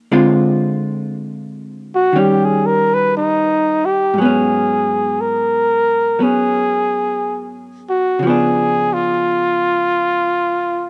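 A clean, picked electric hollow-body jazz guitar opens this intimate, melancholic slow swing excerpt on its own, sitting up front as it comps through a Dm7b5 to Eb7 change. At 1.9 seconds a dark trumpet enters with the melody, soloing in a jazz style with light vibrato and scooped notes in its middle register. From 4.2 seconds the harmony settles into G# minor, moving from G#m11 to a tense C#7b9 while the trumpet continues its melancholic line over the guitar's accompaniment. Both instruments stay close and present, the trumpet slightly louder than the guitar. Light reverb and a dark, warm production give the piece an intimate feel.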